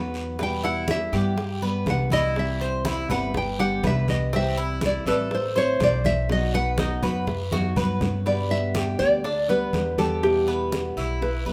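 A straight 4/4 groove at 122 BPM drives this danceable Cuban son and guajira excerpt, anchored by woody, thumpy pizzicato upright bass on gut strings, a raspy, saturated guiro, and tight high-tuned bongos and hard-handed, low-tuned congas sitting in the background. A dark, full-bodied fingerpicked dreadnought steel-string guitar, with finger squeak audible, supplies accompaniment while a bright, metallic Cuban tres plays arpeggios on its doubled strings over chords moving through Em, G, C, Am and B. Up front, the warm nylon-string guitar carries a classical-toned solo melody for the first 8.3 seconds, and a drum fill from 7.5 seconds leads into a new section on G and Em.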